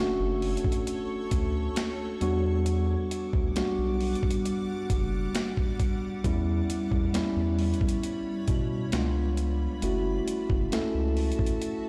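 A gritty, overdriven sampler-style drum kit with a thumpy kick and a medium-tuned snare sits up front from 0.4 s, giving this moody, late-night contemporary R&B piece its straight 4/4 pulse. A mellow tine electric piano and a deep, round analog bass carry the chords from Bm9 through Em9 and Em6 to C#7b9 and F#m7, while a blurred, evolving granular pad hangs behind them in its own reverb and a very quiet electronic impact sounds over the first 2.7 seconds. The whole cut comes across as if played on a big sound system in a bare stone room.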